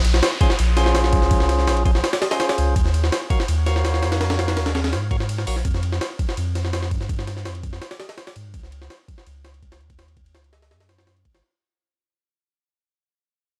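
Frenetic and dark, this short drum and bass and jungle excerpt at 166 BPM pairs a deep, round dub sub bass with a pitched-up, gritty sampler-style drum kit of thumpy kick, high-tuned snare, hi-hat and ride under overdrive and small room ambience, while a fat, percussive tonewheel organ with a stopped rotary speaker and dub echo stabs over Bbm9 and Ebm9 chords from 0.4 to 5.6 seconds and an electronic downlifter sits in the background until 2.8 seconds, all on a dry hardware recording with vinyl crackle that fades out throughout.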